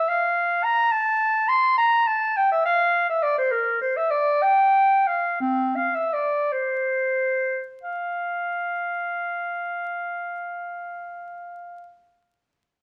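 A wet stone room wraps this recording in a 1.1-second reverb, and faint vinyl crackle sits beneath a sound heard from further back in the room. This is a classical, baroque-style fantasia for unaccompanied clarinet in F major, cut from a longer piece, moving in a dance-like 6/8 with a radiant mood. The tempo is rubato, ranging from 43 to 72 BPM in dotted quarters, and the music slows from 2.6 to 7.8 seconds before a new section opens. The solo clarinet has a warm, roomy tone, sits up front in the performance, and ranges from C4 to C6 in a classical style. It plays alone from the start until 11.9 seconds, just before the fragment ends.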